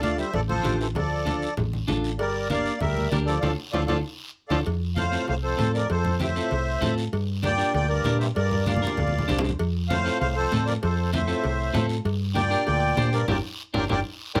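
Close, detailed and lightly reverberant, this fiery, danceable cumbia excerpt in straight 4/4 puts a sweet, reedy accordion melody with light tremolo tuning up front beside a round, dark hollow-body short-scale fingered bass, while a punchy trombone with vibrato carries a second line in the background over clean picked electric guitar, low-tuned thin-skinned congas, ringing metal-shell cowbell and timbales and a raspy guiro, with band accents at 3.4 and 13.3 seconds and recurring drum fills.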